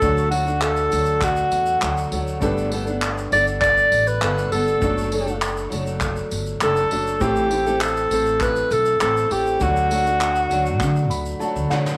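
A moderate echo-chamber reverb gives this short cut from a longer acoustic pop piece a roomy, airy sound, and the mood is carefree and easy-going at a straight 100 BPM in 4/4. Up front, a breathy alto saxophone sings the pop-style melody with light vibrato, its tone warm yet slightly distant. Beneath it, a fingerpicked steel-string acoustic guitar rings with an auditorium glow, a pizzicato upright bass on gut strings sounds woody and thumpy, and a felt-muted upright piano sits mellow and intimate in the background, its action noise audible. A soft brush drum kit with a tight kick, medium-tuned snare, handclaps and tambourine sounds distant in a studio room, while a grainy tube shaker adds a faint, mellow texture from a large room. The chords move from D through Gadd9, D/F# and Am back to D, the piano slips in a fill at 10.8 seconds, and the saxophone drops out at 11.4 seconds as the drums play a closing fill.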